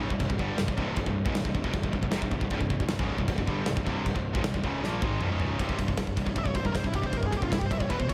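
A driving 156 BPM in straight 4/4 powers this short, epic and aggressive heavy metal clip in C phrygian dominant, cut from a longer piece and built on a single C5 power chord. Two bright, picked rhythm guitars, one scooped and high-gain and the other tight and distorted, share the riff from the start, both touched with slapback echo and sitting in the background alongside a growly, fuzz-overdriven picked electric bass. A modern acoustic studio drum kit sits up front, with a punchy kick, a medium-tuned snare, toms, china and ride cymbals with a dark tone, and a fill between 4.8 and 5.6 seconds that launches the next section. At 6.4 seconds a dark, high-gain lead guitar steps forward with a distorted solo in its upper register. A moderate concert hall reverb gives the whole mix a big arena sound.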